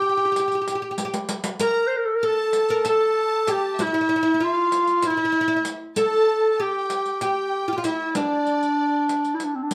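Melancholic and hypnotic, this short cut from a longer Turkish makam ensemble piece moves in a straight 7/8 at 192 BPM in eighths, with a distant, roomy clarinet melody up front carrying slapback echo and plate reverb, a bright, woody, plectrum-plucked fretless oud and a lush, smooth bowed violin section with vibrato as second lines, and a vintage, band-limited riq with dark jingles entering at 0.4 seconds, with a drum fill arriving at 1.0 seconds, all set in a moderate studio reverb.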